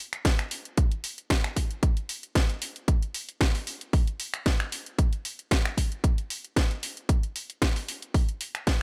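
A house drum kit opens this short nu-disco excerpt at 0.1 seconds, with finger snaps, hi-hat and a cracking snare, and an electronic kick drum joins at 0.2 seconds. The groove sits at 114 BPM in 4/4, with a light 53% swing on the sixteenths that gives it a groovy, feel-good bounce. The kick is punchy and layered, up front in the mix, and sounds re-recorded in a small room with a tape-tinged character. The house kit shares that produced, layered, tape-warm quality and small-room re-recording, its snare cutting through with a sharp crack. Both parts play together until the cut at 8.8 seconds, dry and close with little reverb around them.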